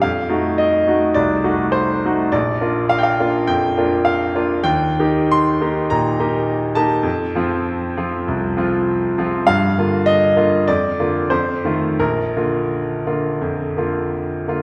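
Set in a reverberant recital hall with a 1.7-second decay and heard from further back in the room, this recording gives a bright grand piano a natural, up-front presence. It is a lyrical, warm romantic character piece for solo piano in Bb major and 4/4, cut from a longer work. The tempo moves freely in rubato between 82 and 108 BPM. The piano covers a span from Bb1 to C6, and its tone is bright and brilliant. Over 14.6 seconds the harmony opens on F7b9, settles on Bb, moves through Eb, F and Gm7, then passes through Bb/F and F7 to come home to Bb at 12.0 seconds.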